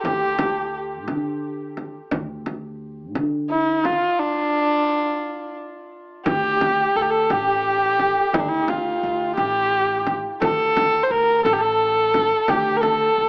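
A dark, airy-bowed kamancheh with light vibrato sings the longing melody up front over a shimmering hammered santur in the background, growly pizzicato upright bass and a deep, dry frame drum struck with hard hands, moving from its opening passage into a new section at 6.3 seconds in this hypnotic Persian modal piece at 58 BPM in 6/8, all heard through an AM radio sound and a small room.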